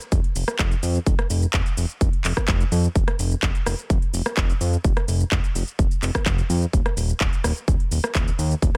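Driving and emotional, this short progressive house excerpt runs at 127 BPM in a straight 4/4 feel. A punchy electronic kick drum sits up front and plays from 0.1 to 8.7 seconds, carrying the most weight among the drum parts. Around it, a house drum kit adds handclaps, rim clicks, shaker and metallic hi-hats, with a tape-warm, layered character that sounds re-recorded in a small room. The fat analog bass spans Eb1 to F2, blending sawtooth, square and triangle waves into a thick, detuned tone with ring modulation and a filter sweep. Tube saturation gives the bass its gritty edge, and sidechain pumping makes it breathe against the beat, its fast attack and sustained notes keeping it prominent. The mix stays dry, with little reverb, so the parts feel close and direct.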